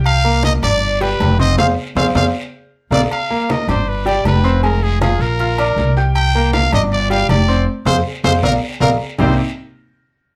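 A driving 158 BPM salsa pulse in C minor carries this passionate clip from a longer piece, where a gritty, growling trumpet with light vibrato sings the melody up front over a bright, worn concert grand with audible action noise, a woody, thumpy pizzicato upright bass, ringing agogo bells and timbales, low-tuned hard-hand congas in the background and a faint raspy guiro, all in a moderate studio reverb, with band accents arriving at 1.6 and 7.7 seconds and drum fills at 2.2 and 8.1 seconds over a Fm to Bb turn.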